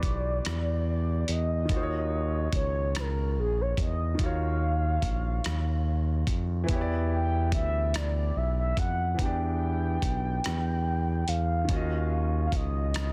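A slow, straight six-eight pulse at 48 BPM, counted in dotted quarters, carries this late-night, sultry R&B fragment cut from a longer piece. A dusty, sampler-style soul kit sits up front with a thumpy kick, hi-hat and rim click; it sounds gritty and tape-warm, as if re-recorded in a small room, with soft clipping on the snare. Beneath it, a smooth sawtooth-and-triangle synth bass with a fast attack holds sustained low notes, also placed up front. A clear, intimate concert grand piano plays accompaniment with audible action noise and deep lows, moving through Em9, D#m9 and Em7. Above, a round, horn-like synth lead with a soft attack sings the melody, colored by vibrato, chorus and phaser, and every part plays from 0.0 to 13.1 seconds in a dense, heavily limited modern master with digital ambience.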